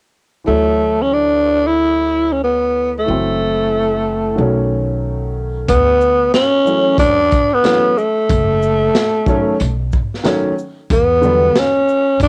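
A home cassette recording with a moderate booth ambience carries this cool jazz-hop excerpt at 92 BPM in D major, where a growling, breathy tenor saxophone sings up front over a worn, slightly detuned upright piano and a woody, thumpy pizzicato upright bass, before a crunchy, saturated breakbeat kit of kick, snare, hi-hat and shaker joins at 5.7 seconds with a swung sixteenth-note feel.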